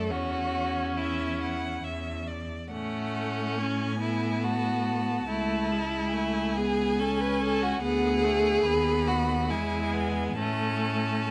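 Lyrical and tender, this slow romantic movement for string quartet unfolds in A major at 70 BPM in 3/4, with a rubato feel that lets the phrases breathe. This passage is cut from a longer piece. The first violin carries the melody high above, while the second violin, sitting up front with a smooth top, shapes an inner line beneath it, and the viola fills in the accompaniment. The cello anchors the bass with a clear, even tone, both distant and up front, and like the upper strings it is bowed with vibrato by a single player. The violins and viola share a rich, focused sound, and the harmony moves from C#madd11/E through A and Bm7/D to E before settling on A at 10.4 seconds. Close, detailed microphones and light reverb give the recording an intimate presence.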